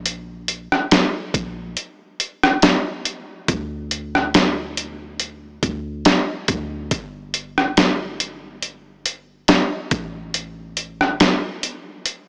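A detuned 8-bit digital drum machine sits up front with a thumpy kick, medium-tuned snare, rim click and hi-hat, re-recorded in a small room, while a soft, round, sine-like 808-style bass with a fast attack sits deep and dark beneath, each note decaying, in this moody, longing contemporary R&B excerpt, its slight swing carried through light reverb and a small-speaker sound, with the kick dropping out from 1.8 to 3.5 seconds.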